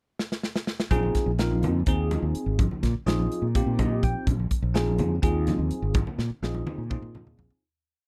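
A bright fretless electric bass sits up front with a syncopated riff over a single Bb9sus4 chord in this slick, intense electric jazz fusion piece, moving at 250 BPM in a straight 7/8. A polished modern drum kit with a punchy kick opens with a fill before the groove starts at 0.9 seconds, joined by ringing, soft-handed congas and a bell-like, clean tine electric piano with phaser that pushes rootless chords and adds a short fill at 3.6 seconds. The recording is dry and close in a 1970s studio style, and the piece fades out from 6.0 seconds under a closing drum fill.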